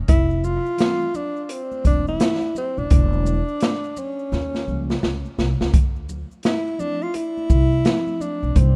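The drums set a swung groove at 85 BPM in 4/4, the sixteenths carrying a moderate swing for this cool, nocturnal slice of jazz-hop cut from a longer piece in D minor. The open jazz kit sits up front with a dark, smooth tone, a boomy kick, a medium-tuned snare, hi-hat and shaker, its top end rolled off, while bright, close maracas and congas tick along in the background. A woody pizzicato upright bass on steel strings anchors the low end from the start, and a mellow tine electric piano enters at 0.8 seconds, clean and tucked behind through its built-in speakers, moving through Fmaj9, Em7b5 and Eb9 before landing on Dm9. Up front, the mellow tenor saxophone carries the melody with a subtone, light vibrato and scooped notes, trailed by tape echo, and after a drum fill from 4.3 seconds it takes a solo starting at 5.7 seconds. The whole thing has the loose, roomy feel of a rough home demo recorded in a small space.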